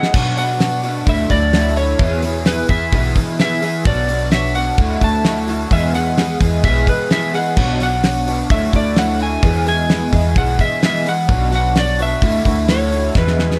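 An electric slide guitar carries a hopeful, nostalgic melody over a cycling Bm, Dadd9 and E progression at 129 BPM in this folk rock and heartland rock excerpt in a straight 4/4. Beneath it, a twangy, slightly broken-up electric guitar with analog chorus plays a riff, a boxy, shimmering twelve-string acoustic sits in the background, and a woody pizzicato upright bass anchors the low end. A damped 70s drum kit with a fat snare, tight kick and dark cymbals sits up front in the dry mix, closing with a drum fill at 13.2 seconds.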